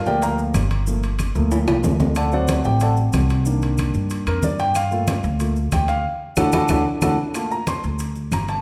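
A grand piano opens this sultry, sophisticated slice of Afro-Cuban jazz, up front and intimate, with its natural tone carrying audible action noise as it takes a solo over a minor-key progression that moves from Gm9 through D7 and Cm9 before settling back on Gm9. Almost at once the upright bass joins, sitting forward in the mix with a woody, pizzicato sound from steel strings that gives the low end a warm weight. Around them the percussion fills in. Low-tuned congas ring in the background with a compressed, saturated edge. Metal-shell timbales ring out in the live room, close, grainy maracas add a mellow texture, and dry, wood-toned claves tick quietly behind. A drum fill arrives at 1.5 seconds, and another at 6.1 seconds coincides with a full-band accent on a D chord before the harmony returns to Gm9. The whole ensemble sits in the generous reverb of a recital hall, giving this short excerpt from a longer piece an elegant, resonant atmosphere.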